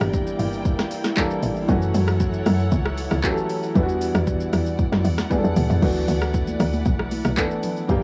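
A woody, punchy log drum bass anchors this relaxed, soulful amapiano excerpt at 116 BPM in D major, up front alongside an overdriven deep house kit with a deep kick, punchy snare and metallic hats, a clear but boxy baby grand piano and sustained, bowed strings with vibrato, moving through Gm6, F#m7, Em9 and D69, with a drum fill at 5.3 s before bright, high-tuned congas join in the background at 5.8 s, all captured dry with small-room ambience on a cassette home recording.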